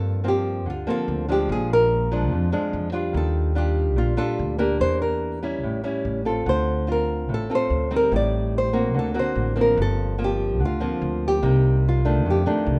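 Two small, fingerpicked nylon-string guitars, one carrying a melancholic, wistful melody and the other the chords, open this short bossa nova cut together with a woody, growly pizzicato upright bass, all up front under light reverb at 145 BPM in G minor, moving through rich harmony such as Gm11, Ebmaj9 and D7b13 before reaching F13 near 12.3 seconds.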